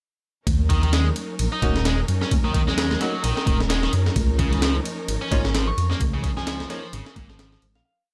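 A gritty, thumpy sampler-style breakbeat kit sits up front, its compressed kick, high-tuned snare and ride cymbal running a looped break with edits at 130 BPM, with a 16th-note swing. This raw breakbeat piece in Eb minor is a single groove that starts at 0.5 seconds and fades out from 5.4 seconds. Beneath the drums, a thick, swirling detuned saw bass with a phaser plays a dark, skipping syncopated line, while warm congas loop high and low hits in the background. A bright, tight distorted guitar repeats a picked 32-step sequence through tube saturation and dub echo, and a clear concert grand adds sparse, echoing chord stabs that move one shape in parallel. A lush, dark symphonic string section holds bowed, vibrato-rich chords in the background with sidechain pumping, shifting from Ebm7 to Db69 at 4.2 seconds, and near the close a soft, pure FM synth bell warbles through chorus, phaser and a telephone-like filter in short decaying phrases, all in a small room ambience.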